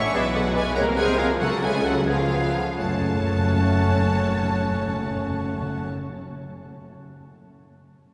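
In 6/8 at roughly 84-98 BPM counted in dotted quarters, this short, stormy fragment of a quick classical-period symphonic movement in F# minor sweeps through a darkly dramatic cadence as it slows over its first 2.8 seconds. The violin section carries the high, focused melody with rich vibrato, while a second violin line, a clear, present oboe and an airy silver flute weave supporting lines beneath it. Violas and a solo bassoon fill in the accompaniment, and a tight, mellow French horn section holds sustained chords. The warm cello section and the double basses anchor the bass, the cellos sitting strongest in the mix. Timpani struck with hard mallets join at 1.4 seconds, as the harmony moves through diminished and dominant-seventh chords toward a resolution on F# minor at 2.8 seconds. A long, wet cathedral reverb wraps the whole orchestra in a cavernous halo.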